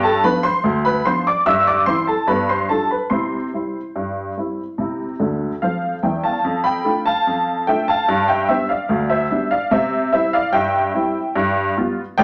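A wet club reverb surrounds this short ragtime clip, giving it the sound of a lively room. A lone honky-tonk upright piano plays the whole passage, placed up front with a detuned, jangly tone and a short, woody sustain. The mood is jaunty and playful in a straight two-beat metre, the piano ranging from D2 up to E6. The harmony moves among G7, C/G and C, and the opening passage closes with a honky-tonk fill at 5.2 seconds before a new section begins at 6.4 seconds. That second part starts on Dm/F and turns through G7 and C before the clip ends at 12.2 seconds.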